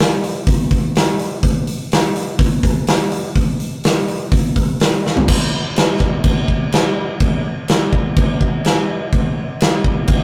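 Rock drum excerpt at 125 BPM in a straight 4/4, carrying a raunchy, gritty mood across roughly ten seconds cut from a longer piece. A huge arena drum kit carries the whole passage, with crash cymbal, hi-hat, kick drum, snare drum and toms, all acoustic and natural in a big room. The punchy kick and medium-tuned snare sit up front, giving the kit real weight and presence. A drum fill at 5.0 seconds leads into a new section at 5.3 seconds, which runs to the end at 10.2 seconds. The sound is a rough rehearsal-room recording with tube saturation and light reverb, lending it a raw, grainy edge.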